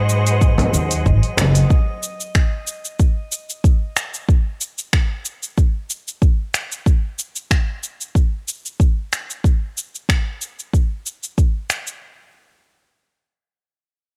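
Organic downtempo at 93 BPM with a light 16th-note swing, earthy and meditative, this excerpt opens on a G#7 chord where a bright, lush bowed string section with vibrato and a filter sweep and a woody, growly pizzicato upright bass both pump under sidechain, alongside a glassy, drifting sine-harmonics texture in chorus and reverb, before these parts fall away by 1.7 s, while a deep, hard-handed frame drum makes a brief live-room appearance and an up-front, tape-warm electronic kick and deep house kit of cabasa, finger snaps and metallic hi-hats carry the groove, the kick dropping out at 11.5 s and the kit continuing through to 12.0 s.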